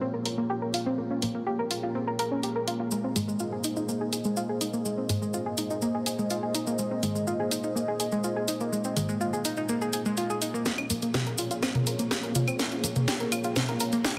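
A soft, round pluck sits up front in this hypnotic, dark piece of melodic techno. Its mellow arpeggios are coloured by chorus, cassette tape grit and tape echo, and a filter sweep works on them through the first 10.7 seconds. Beneath it, a moody analog pad holds sustained chords with a slow attack and long release, while a muted, detuned dub chord stab sits in the background through phaser and echo, and pad, pluck and stab each pump against the sidechain. A house drum kit arrives almost at once, up front with a cracking snare alongside claves, hi-hat and toms, and a grainy acoustic cabasa joins at 2.9 seconds as the harmony moves from Bbm7 to Ab. At 10.7 seconds the chords return to Bbm7 and a build-up begins with a drum fill, as a very quiet, punchy electronic kick and a barely audible, nasal analog bass slip in, all bathed in a huge ambient reverb and a dense, heavily limited modern master.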